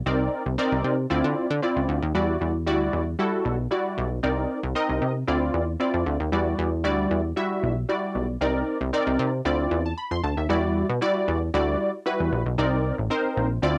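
Early-eighties boogie funk with a danceable, funky mood, this short cut from a longer piece rides a straight 4/4 groove. A plucky analog bass drives the bottom from the first moment, its punchy, evolving sawtooth and pulse-wave tone snapping with a filter pluck and fast attack before decaying, sitting up front in the mix. Just after, at 0.1 seconds, a funky polysynth comp joins in the upper register, its detuned sawtooth and square-wave voices edged with ring modulation and carried on a sustained, chorus-thickened sheen and a touch of cassette tape colour. The harmony cycles through rich minor ninth chords, Cm9, Dm9 and Em9, shifting into a second section at 10.5 seconds that opens on Em9 before returning to Cm9. Light reverb and the hazy character of a home cassette recording give the whole track an intimate, lo-fi charm.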